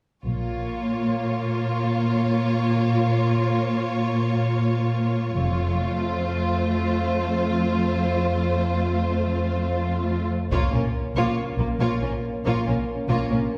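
Dramatic and relentless, this cinematic orchestral excerpt unfolds in free time in Bb harmonic minor, with a lush, vibrato-rich violin section carrying an expressive, soft-edged melody over a second violin line, distant violas gliding with portamento, and a dark, up-front cello section anchoring the bass as the harmony moves from Bbm to F. Woody double basses surface only briefly until a build-up at 10.5 s, where they return alongside a shadowy, roomy French horn section holding sustained chords and a hard-stick taiko ensemble striking in the background until 11.3 s. The whole ensemble sits further back in a reverberant scoring stage, giving it a grand, enveloping scale.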